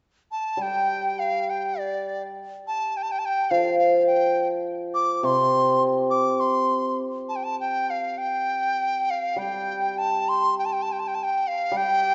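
A large bamboo dizi opens at 0.3 s, its brilliant, pure tone edged by the buzz of its membrane as it carries a tender, wistful melody between D5 and D6. The hammered dulcimer joins at 0.6 s with a shimmering, ringing accompaniment in the low register, from C3 to G3, and both instruments sit up front. The dizi's line is tongued and coloured with vibrato, while the dulcimer's hammered strings keep an acoustic glow beneath it. This Chinese traditional chamber piece is nominally at 103 BPM in 4/4, but it moves freely in rubato, with tuning set to A4 = 439 Hz. A moderate concert hall reverb of about 1.9 seconds surrounds the pair, and the top end is rolled off above 7.8 kHz, giving the sound a soft, rounded ceiling. The 12-second passage is a fragment cut from a longer work, with both parts playing until 12.1 s.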